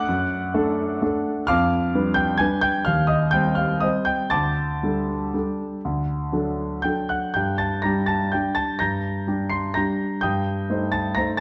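A classical piano waltz in 3/4 with a rubato feel, this nostalgic, wistful fragment of a longer piece features a solo grand piano, present and up front with long sustain, ranging from deep bass to high treble over moving harmonies that pause on a suspended chord before resolving, set in a moderate recital hall reverb with a dark, warm production.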